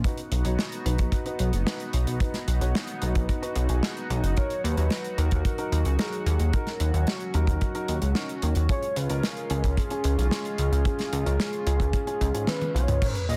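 A glossy, up-front chorused synth bass drives this moody synthwave excerpt, joined by a tight acoustic kick, a natural small-room drum kit with dark cymbals, a shimmering sidechain-pumped pulse-width pad, and mellow stabs from a dark grand piano with digital delay; a smooth, expressive synth lead with vibrato and chorus enters at 4.4 seconds, and a drum fill at 12.5 seconds leads into an electronic sub drop at 13.0 seconds in a dense, heavily limited mix.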